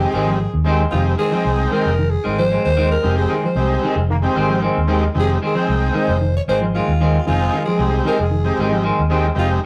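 A rough rehearsal-room recording with warm saturation and a moderate studio reverb gives this short fragment of an afrobeat piece an intense, hypnotic feel, held on a single Fm7 chord in a straight 4/4. Up front, a dark, round fingered electric bass anchors the groove, while a vintage, buzzy overdriven combo organ with heavy vibrato fills out the accompaniment. A picked clean electric guitar, bathed in spring reverb, adds prominent stabs, and a semi-hollow electric guitar plays warm, clean arpeggios further back in the mix. Over this, a raspy, gritty alto saxophone carries the melody in a pop-style solo with vibrato. A brilliant, tight, close-miked trombone section briefly adds a second line between 4.1 and 5.0 seconds.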